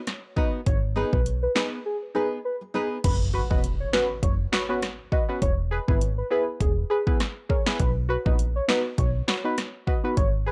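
A plucky, nasal analog bass sits up front in this bouncy, tough dancehall excerpt at 101 BPM, joined by a deep house drum kit with a deep kick and punchy snare, a deep mellow chord stab with chorus and sidechain pumping, and a velvety synth lead with vibrato carrying the melody. A dark, full-bodied nylon-string guitar plays fingerpicked arpeggios through a break from 1.9 seconds and stops at 3.0 seconds, where an electronic impact sounds in the background as the chords move from G#m to F#sus4, E and B. The dry, gritty sound has a cassette-tape character.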